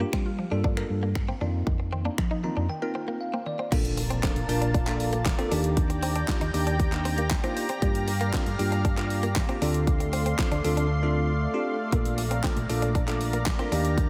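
Carefree and euphoric, this dance-pop passage opens with a bright, bell-like tine electric piano, a woody FM synth pluck spinning arpeggios until 3.6 seconds, a clean picked electric guitar riff set in the background, and a round, dark hollow-body bass, over a punchy, layered pop drum kit with a fat snare, finger snaps and handclaps. At 3.7 seconds, after a short break and an electric piano fill, a lush, warbling detuned sawtooth pad swells in with slow-attack chords, joined by a very quiet electronic impact, while sidechain pumping gives the piano, bass and pad a steady pulse. The groove glides through jazzy seventh chords under light digital ambience, pausing for a brief silent gap at 10.9 seconds before pressing on.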